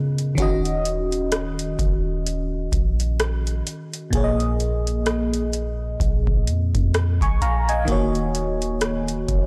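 A glassy, bell-like FM electric piano, treated with chorus and phaser, begins this short slice of slow contemporary R&B in Eb minor alongside a soft, round, dark 808-style bass, and a booming analog drum machine joins at 0.2 seconds with a deep kick, metallic hi-hats and rim clicks. At 64 BPM in 4/4 with lightly swung sixteenths, the harmony moves from Ebm7 to Bb7sus4 and back to Ebm7, setting a longing, sensual mood. The recording is dry, blown-out and overdriven, with lossy compression artefacts, and the piano and drums sit up front.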